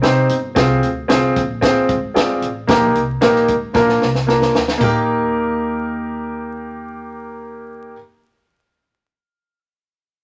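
Joyful and danceable, this brief excerpt from a longer piece captures uptempo 1960s-style soul in a straight 4/4 feel. An upright piano sits up front as the accompaniment, its woody, intimate tone carrying audible action noise and a long, polished sustain. Beneath it, a pizzicato upright bass with steel strings adds a growly, dark low end. A compact cocktail drum kit, dry and close, pairs a punchy kick with a high-tuned snare and dark cymbals, then plays a fill from 3.7 to 4.8 seconds before dropping out at 4.9 seconds. The chords move from Cm through Fm and Eb/Bb to Bb, arriving on Eb as a new section opens at 4.8 seconds, while moderate studio reverb and a layer of vinyl crackle lend the sound a vintage patina.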